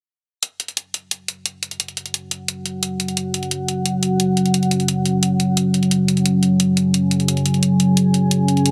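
Dark technical drum and bass in a straight 4/4, this short excerpt feels mechanical and aggressive. A bright, layered electronic hi-hat carries the drums from 0.4 seconds, sitting up front with the close, boxy character of a small room. At 2.5 seconds a deep, moody ambient pad arrives with sustained chords built from detuned sawtooth unison, sine tones and a sub octave, its slow attack and long release softened by chorus and its own reverb. A filter sweep shapes the pad across the passage, and the harmony rests on F#5. The whole mix carries a light reverb and a heavily compressed, radio-like sheen from multiband compression.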